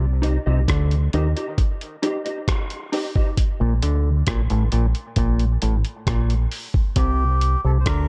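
A hazy, spacious digital ambience surrounds this short dub reggae cut, taken from a longer piece, with a straight, unhurried 4/4 pulse. Up front sit a muffled, pitched-down, sampler-style drum kit with a thumpy kick, hi-hat and rim click, and a round, punchy, deep fingered electric bass that carries the low end throughout. A stringy, percussive clav filtered through auto-wah plays a riff from a combo amp, its notes trailing into dub echo, while a clean, compressed electric guitar adds mellow accompaniment through ensemble chorus and a high-pass filter until 3.3 seconds. The harmony moves from C minor to B-flat, with the opening 7.0 seconds framed as a break. At 7.0 seconds a reedy, breathy melodica enters with a nasal, smooth melody, its phrases echoing into the haze as the chord lands on C5.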